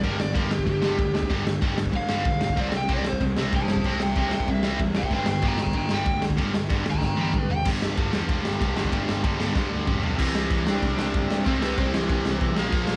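Upbeat and rowdy, this punk rock excerpt in straight 4/4 opens with an overdriven semi-hollow guitar soloing with tape echo over a double-tracked, bright distorted electric guitar riff, a growly fuzz-picked electric bass and a raw garage drum kit with a punchy kick, a medium-tuned snare and a saturated, rolled-off top, sitting up front. The chords move between G5 and C, with drum fills at 7.0 and 9.6 seconds. The solo guitar drops out at 7.7 seconds and returns at 10.2 seconds, all within a small room's light reverb.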